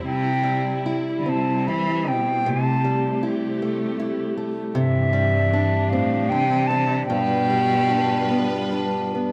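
Celtic folk in the manner of a slow air, this wistful, pastoral piece moves at 76 BPM in a rubato 3/4 with uneven beats, its chords passing from C through Am7/C and Cadd9 to G7. A pure, woody flute with a straight, tongued tone carries the melody, while a focused cello bowed by one player adds a clear second line with vibrato beneath it. A dark, boxy fingerpicked archtop guitar accompanies them, and a lush symphonic string section sustains chords with vibrato and portamento, all captured by close, detailed microphones in light reverb in this short cut from a longer piece.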